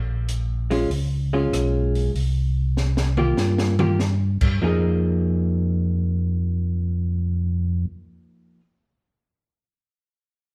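A mellow, round tonewheel organ opens this soulful, late-night soul jazz organ trio excerpt, carrying the bass line in F minor with light overdrive, chorus vibrato and a slow rotary speaker at a swinging 97 BPM. A compact cocktail drum kit with dark cymbals, a high-tuned snare and a punchy kick joins almost at once, playing a fill from 2.8 to 4.0 seconds before dropping out at 4.5 seconds. A clean, compressed hollow-body electric guitar adds picked accompaniment over chords moving from Bbm7 through C7sus4 to Fm7, lasting until 8.6 seconds, all set back in a reverberant studio room.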